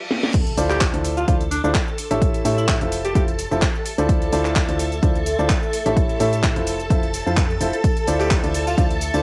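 Piano house at 128 BPM in D minor, energetic and soulful, with a light swing on the sixteenths and a lo-fi cassette haze over much of the mix; it's cut from a longer piece. A background reverse cymbal and impact open the clip, and a layered house kit comes in with a drum fill at 0.1 seconds, bringing a cracking snare and filtered, tape-softened hats, cabasa, crash and handclaps. At 0.3 seconds the drop arrives with an overdriven, punchy electronic kick up front, and a round, mellow FM bass follows at 0.6 seconds, pumping under the groove. A clear, intimate grand piano riff, complete with audible action noise and analog delay, carries the Dm9, A7 and Fmaj7 changes above shimmering, vintage string-machine violins that pump gently with the kick. A raspy, growling alto saxophone plays a distant, jazz-inflected melody with vibrato and scooped notes, then returns briefly near the end. From 3.4 seconds a very quiet, blurred granular pad drifts in, and a faint tambourine joins at 7.8 seconds, all sitting in light reverb with a homemade cassette character.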